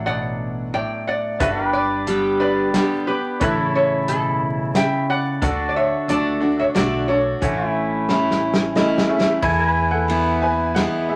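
A nasal, metallic lap resonator guitar takes a steel-bar solo through the first 9.4 seconds of this nostalgic, heartfelt honky-tonk excerpt in 3/4, over a full-bodied picked dreadnought acoustic guitar, a very quiet jangly tack piano, twangy pedal steel volume swells, woody pizzicato upright bass and a punchy small-room drum kit that enters at 1.4 seconds and plays a fill before a clear, boxy upright piano takes the melody at 8.8 seconds, all under moderate reverb and vinyl crackle.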